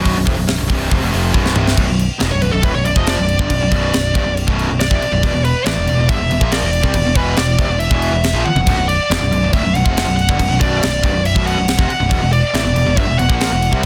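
A dense, heavily limited mix with light reverb frames this relentless, epic heavy metal excerpt in B minor at 139 BPM, where three bright picked rhythm guitars (one high-gain, one raw and double-tracked with overdrive, one tight and distorted) churn a riff in the background over a growly, direct picked bass and an up-front, airy drum kit with a high-tuned snare and tight kick, fills at 1.3 and 8.5 seconds, and a distorted, high-gain lead guitar that takes a solo from 1.8 seconds over chords moving between Bm and E5.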